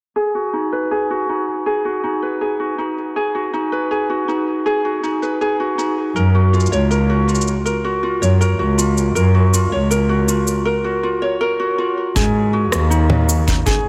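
Bright, fingerpicked ukulele arpeggios roughened by vintage sampler grit, filtering and delay open this wistful, intimate folktronica fragment alongside a tape-warm electronic shaker, rim click and congas, both under filter sweeps, before a dark, veiled con sordino cello with light vibrato enters up front at 6.2 s as G#m7 gives way to F#maj7, and after a break from 10.7 s a punchy, rolled-off kick drum arrives at 12.2 s on G#7(no3), the whole dreamy mix soaked in cathedral-like reverb.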